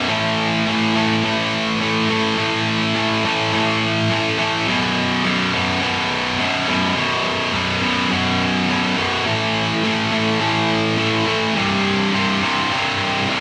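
Metal in 4/4 at 104 BPM, this aggressive, heavy excerpt features a lone bright, distorted, high-gain electric guitar, picked and double-tracked up front from 0.0 to 13.4 seconds between B1 and A3, moving through A5, B5, A5 and C5 inside the wet reverb of a stone room, where it was captured live.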